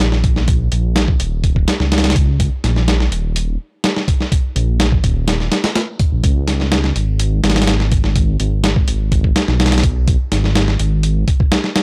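A swaggering, raw breakbeat groove opens with a dusty, sampler-style soul drum kit of compressed, gritty hi-hat, thumpy kick and medium-tuned snare, sitting up front beside a dark, detuned saw bass whose deep, rumbling, saturated tone holds sustained notes until 11.2 seconds, all heard dry and gritty in this short cut from a longer piece.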